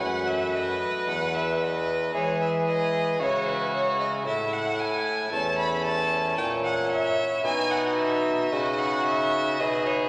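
A single bowed violin sits up front with a rich, smooth vibrato tone, carrying the melody in this radiant, dance-like baroque-style sonata movement at 56 BPM in 3/4, played with rubato and tuned to A4 = 437 Hz. A second violin plays an even, lower second line, while a clear solo bassoon holds the bass and a pipe organ's nasal cornet solo stop fills in the continuo with romantic voicing. The harmony moves from B7/F# through E, C#m, A and A#dim to B, and the playing is set in a wet concert hall reverb lasting 2.5 seconds in this short fragment of a longer piece.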